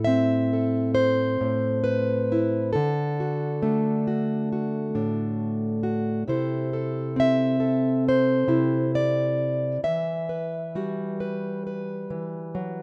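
A full-bodied, up-front fingerpicked steel-string jumbo acoustic guitar with fresh strings plays alone in this reflective, intimate folk excerpt, moving freely in rubato through Amadd9, D, Am/C and Emadd9 across a span from A2 to E5, with light reverb and studio ambience giving the rough home-demo mix a close, personal feel.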